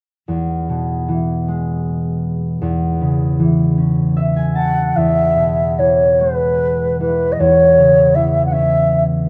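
A ringing, thumb-plucked concert harp opens this wistful, tender Celtic slow air in E major at a rubato 51 BPM in 6/8, adding a fill at 3.8 seconds before a pure, mellow wooden flute with vibrato and slapback echo takes up the melody at 4.5 seconds, all captured with a dry open-air sound in a brief cut from a longer piece.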